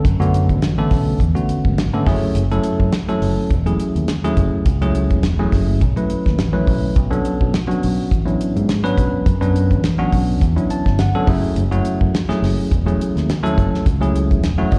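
Electric jazz fusion with a driving, slick feel and a light swing, cut from a longer live gig heard through the venue's PA in a recital hall. A bell-like tine electric piano with a clean, bright tone and slapback echo sits up front over Bm9 and F#m9 chords, adding fills at 10.4 and 14.4 seconds, while a fingered electric bass lays down a dark, round, punchy line. A damped 70s drum kit with a fat snare, tight kick and rolled-off top plays dry and close throughout.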